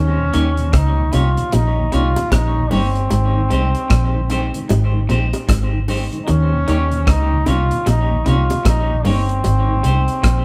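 A bright, distant trombone sings a vibrato-tinged melody from the first moment of this uplifting roots reggae excerpt, over a dark, foam-muted fingered bass up front and a slightly broken-up, twangy guitar riff with a warbly pitch drift in the background. Almost at once a very quiet, mellow tonewheel organ with rotary-speaker colour fills in softly, and a dry 70s drum kit with a tight kick, hi-hat and rim click joins, along with a clean, picked guitar washed in spring reverb and analog delay. From 1.1 seconds, high-tuned bongos played with hard hands add close, dry hand percussion to the swung groove, which moves between Eb7 and Abmaj7 in a live, shared-room sound.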